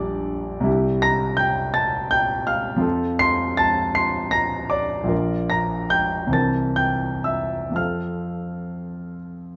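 A smooth, vintage-toned grand piano sits up front and plays alone in this serene, nostalgic fragment of a romantic classical nocturne in F major, unfolding in a rubato 6/8 at roughly 39-57 BPM counted in dotted quarters, with harmonies moving from Gm/Bb through C7 to F and on to Bb before settling back on F at 7.8 seconds, all captured with close, detailed microphones and light reverb.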